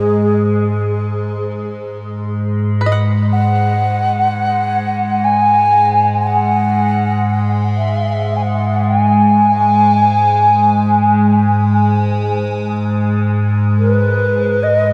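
A wooden-headed alto flute and an evolving wavetable pad open together in this free-time world meditation piece, cut from a longer work, setting a meditative, spacious mood. The flute carries the melody with an airy, tongued tone, vibrato and a slightly unsteady quality, sitting up front yet sounding distant. Beneath it, the pad holds a low drone of morphing unison triangle tones with a slow attack and long release, its bright sound treated with a phaser and its own built-in reverb. At 2.8 seconds a bluegrass banjo joins as a soft background texture, its twangy, percussive fingerpicked notes ringing until 11.1 seconds. The whole mix is soaked in a huge ambient reverb and carries the dreamy, hazy character of cassette tape.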